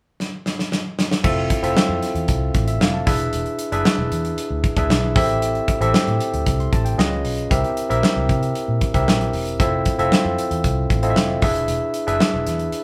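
Polished 1980s jazz-funk pop at 115 BPM in F major, glossy and breezy and cut from a longer piece: an up-front acoustic studio drum kit with a punchy kick, bright cymbals and a medium-tuned snare opens with a fill from 0.2 to 1.2 seconds, then at 1.2 seconds a barky, clean tine electric piano through a combo amp and a dark, round, foam-muted fingered electric bass join over a progression of Fmaj7, E7, Am7, Db9 and C7, the band sounding live together in one large studio room with moderate reverb.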